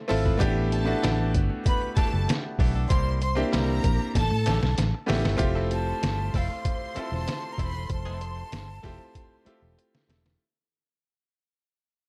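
A bright grand piano with audible action noise opens this romantic, lush 1970s-style soul excerpt at 96 BPM, quickly joined by a twangy, spring-reverbed clean electric guitar riff in the background, a dark, round foam-muted bass and a compressed, muffled trip hop sampler-style drum kit with a thumpy kick, while a woody, bowed string section adds a second line and a breathy jazz flute takes the melody from 5.7 seconds as the music fades out from 5.4 seconds over chords moving from A7sus4 to Fmaj7.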